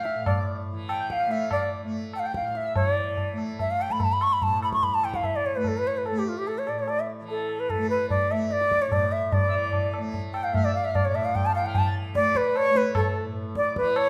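Hindustani classical music, serene and radiant, in a fragment of a longer piece that gradually gathers speed. A pure bamboo bansuri with vibrato, crisp attacks and lifted highs carries the expressive melody up front, over a softly plucked, buzzing, shimmering tanpura drone and close, low-tuned tabla with a short ring. A reedy, breathing pedal harmonium adds a second line at the opening, drops out at 2.8 seconds and returns at 9.4 seconds, with the whole performance set in a reverberant recital hall.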